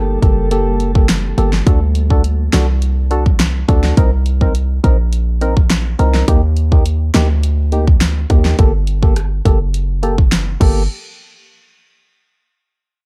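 A glassy FM pad with ensemble chorus and its own reverb opens the music alongside a hollow, nasal organ stab and a hard-hitting 808-style bass, though the pad stops by 1.6 seconds. This hypnotic, sultry dancehall groove at 104 BPM in G harmonic minor then rides on a punchy, up-front electronic pop kit with a fat snare, rim clicks, hi-hat and crash, while the heavy sine bass and the chorused organ stabs carry the chords through a dark, dry production. The instruments drop out near 10.9 seconds, closing this cut from a longer piece.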